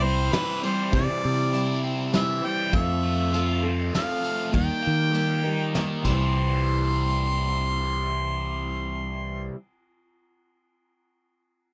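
A straight 3/4 lilt at 100 BPM carries this hopeful folk rock and heartland rock excerpt in C mixolydian, moving through C, F and Eb. A punchy, close-miked harmonica leads up front with light vibrato and scooped notes, over a dark, picked steel-string acoustic guitar with finger squeak, a bright, overdriven and double-tracked stack guitar riff with phaser, and a fingered electric bass that sits direct and warm in front. A soft brush kit with dark cymbals, a fat snare and a tight kick plays roomy and distant in the background from 0.3 to 6.2 seconds, all in a dry mix.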